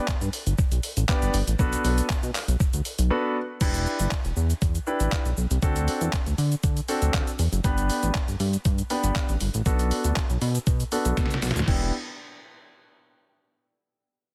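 This dance-pop excerpt moves at 119 BPM in a straight 4/4, sitting in E minor with a confident yet bittersweet mood as the harmony cycles through G, Bm7, Em7 and D7. It opens on a drop, with a concert grand piano carrying the accompaniment in an intimate, polished tone, its action noise audible, its sustain long, and a low-pass filter and sidechain pumping shaping it. Beneath it, a chorused synth bass blends pulse-wave and sawtooth colours with pulse-width modulation and a filter pluck, sounding retro, glossy and saturated while also pumping against the beat. A detuned 8-bit drum machine, overdriven and re-recorded in a small room, supplies a thumpy kick, fat snare, handclaps, hi-hat, shaker and crash cymbal. After a brief silent gap from 3.1 to 3.6 seconds the groove resumes, and a drum fill at 11.2 seconds leads into a new section as the piece is cut off. The mix is dense and heavily limited, with the drums, bass and piano all up front in a digital ambience.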